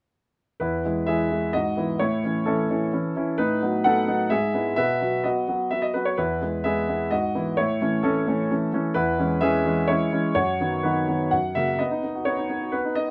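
A solo concert grand piano begins at 0.6 s with a clear tone, setting out an elegant, playful classical-period sonatina in a three-beat metre with a straight feel. The instrument sits up front, with a deep bass and an open upper register across a span from E2 to F#5. The harmony moves gracefully through simple, balanced progressions, and the later phrases lean toward a brighter new tonal centre. At 11.8 s a new section begins, and the passage breaks off at 13.1 s as an excerpt cut from a longer piece. A moderate studio reverb gives the piano a touch of space while keeping its detail crisp.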